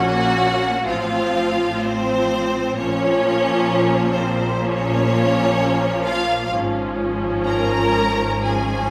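Heard from further back in a reverberant scoring stage, this short cut from a longer classical piece has a wet, spacious sound that lingers around a string orchestra. It is a slow, romantic movement, lyrical and tender, played with a flexible rubato. A clear, focused violin section sits up front with the bowed melody, while a second, richer violin section carries a supporting line beneath it. A smooth, even viola section, also placed forward, fills in the accompaniment with lush vibrato. Underneath, a focused cello section in the background and a distant double bass section with light vibrato share the bass as the harmony moves from Bbm through F/A, back to Bbm, and on to C#/G# at 6.5 seconds.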